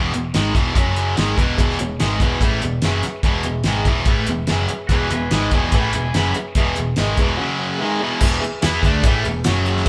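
A straight 4/4 pulse at 145 BPM drives this sunny, confident classic rock clip in E major, cut from a longer piece and tuned to A4 = 438 Hz. A dry, up-front 70s drum kit, with a fat snare, tight kick and dark crash, ride and hi-hat, sits under two bright, picked electric guitars playing the riff: one overdriven and forward, the other distorted, compressed and tucked in the background. A round, foam-muted picked bass, dark and amped, holds the low end, while the harmony moves between E and F#5. From 1.6 s a mellow, reedy electric piano adds clean accompaniment with a fast tremolo through its built-in speakers, and a crunchy overdriven guitar slips in a short second line at 4.9 s. A grainy egg shaker joins in the background at 8.2 s, and the whole band plays live in one room with moderate studio reverb.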